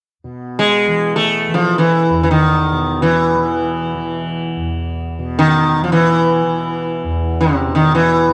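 A plectrum-plucked sitar sits up front, its buzzing tone ringing with sympathetic strings and a slapback echo as it carries the melody from 0.6 seconds in this devotional, meditative fragment of Hindustani classical music. Beneath it, a softly plucked tanpura, entering at 0.2 seconds, holds a shimmering drone lower in the mix. Light reverb colors a dry, close, 1970s-style studio sound.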